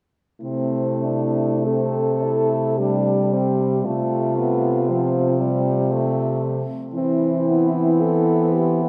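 Unfolding in a triple metre with a free, rubato pulse, this brief classical fragment for horn quartet is slow, tender and lyrical. All four French horns sound together from 0.4 to 8.9 seconds: a mellow lead horn carries the melody with a light vibrato, while a second horn sings an inner line beneath it, also touched with vibrato and sitting distant and roomy. A third horn, warm-toned with a soft attack, fills out the accompaniment. The bass horn has a rounded, soft-edged entry and light vibrato, and it sounds both roomy and up front, anchoring the low register. The harmony moves unhurriedly from C to F over C and then to C with E in the bass, and a wet cathedral reverb with a long 4.4-second decay surrounds the ensemble in a spacious, hushed glow.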